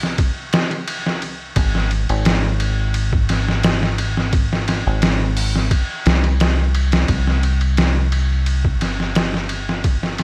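A gritty, sampler-style drum kit sits up front in this brooding, smoky trip hop excerpt, its compressed, pitched-down sound built on a thumpy kick, a medium-tuned snare, hi-hat and ride cymbal, with a tape-kissed character and a touch of studio reverb. Beneath it, a deep dub fingered electric bass holds the low end between G1 and C2, its tone dark and round. Both parts play throughout the full 10.2 seconds at a steady 87 BPM in straight 4/4. A layer of digital ambience adds vinyl crackle across the recording. The passage moves from its opening section into a new one at 7.1 seconds before it is cut from the longer piece.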